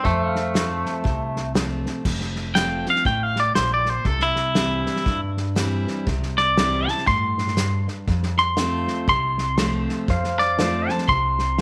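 A bright, twangy electric guitar sits up front with tape echo, carrying the melody before launching into a clean solo at 2.1 s in this easygoing, down-home honky-tonk and classic country excerpt with a swung feel. Beneath it, a fresh-stringed dreadnought acoustic guitar is picked, a dark, thumpy gut-string upright bass is plucked, and an acoustic drum kit played with bundle sticks supplies punchy kick, medium-tuned snare, hi-hat and crash. A pedal steel adds sustained chords with volume swells at the opening and again near the close, while a detuned, jangly vintage upright piano slips into the background at 10.6 s, all inside a small room with light reverb.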